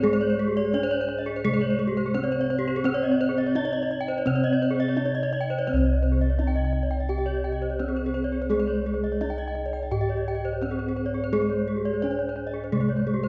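A bronze metallophone struck with a wooden mallet carries the melody from the start, its paired tuning producing shimmering beats, while round, mellow bossed gongs played with padded beaters sit up front beneath it as the bass. A close-miked, dry and full metallophone plays bright horn-mallet arpeggios alongside, and a second horn-mallet metallophone joins at 0.2 s with its own arpeggios in the same register. This brilliant, shimmering passage of Balinese gamelan in C pelog moves at a straight 85 BPM in 4/4, set in a reverberant recital hall and cut from a longer piece.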